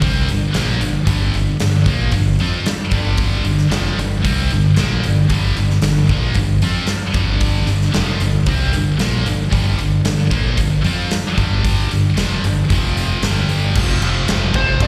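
A heavy, high-gain rhythm guitar drives this anthemic, swaggering hard rock excerpt, its bright, double-tracked, picked riff sitting up front from the first moment at 114 BPM in a straight 4/4. Beneath it, a growling fingered electric bass with a punchy, overdriven edge anchors the low end, while a huge arena drum kit pushes forward with a punchy kick, a medium-tuned snare, and bright crash, ride and hi-hat cymbals. The harmony rocks between G5 and F5 power chords, moving to F5 around 12.7 seconds, back to G5 at 13.2 seconds and to F5 again near 13.8 seconds as the passage turns toward a new section. At 14.6 seconds a smooth, dark, overdriven lead guitar just begins to sing a melody as the clip cuts off. The whole thing has the feel of a live gig heard through the venue's PA, with the drums carrying a hall-like ambience and a recital-hall sense of space around the performance.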